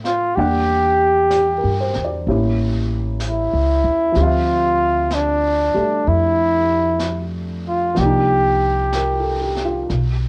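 Heard through the tape-tinged intimacy of a home cassette recording in a small booth, this tender, romantic jazz ballad excerpt drifts at 63 BPM with a gentle swing, as a soft-edged flugelhorn carries the melody up front with scooped notes over a dark, slightly detuned upright piano bathed in plate reverb, a growly, woody pizzicato upright bass, and a quietly brushed drum kit with a high-tuned snare, moving through Em7b5, A7b9, Dm11 and Cm11.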